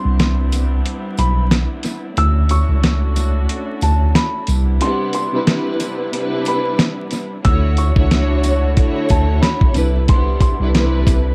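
A gritty, sampler-style drum kit sits up front in this nostalgic boom-bap hip-hop piece, cut from a longer track, its thumpy kick, fat snare and hi-hat compressed and touched with analog delay. Alongside it, a mellow tine electric piano carries the bass line, clean and heard through its built-in speakers, while a tambourine jingles in the background of a small room. A lush, woody string section holds sustained chords with vibrato, close to the listener, and an intimate upright piano with audible action noise plays a high, boxy melody, filtered and echoed with analog delay. At 4.8 seconds a second string section joins as accompaniment, its smooth, even tone colored by cassette tape and delay. The harmony moves between Cmaj9 and Dmaj9 with a gentle swing on the sixteenths, wrapped in light reverb, studio ambience and vinyl crackle in an echo-heavy mix.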